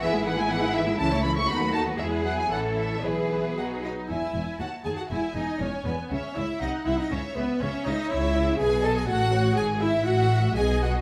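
Quick classical-period string orchestra music, cheerful and spirited, moves with a flexible rubato feel through an 11-second passage cut from a longer piece. A dark, woody first violin section carries the melody over a second violin line with a rich, focused tone, while an up-front viola section gives clear, smooth accompaniment. Beneath them sit the cellos with a smooth top and an expressive, prominent double bass section, all bowed with vibrato in a wet, reverberant stone room, and a second passage begins at 4.1 s that turns toward C# minor at 6.1 s.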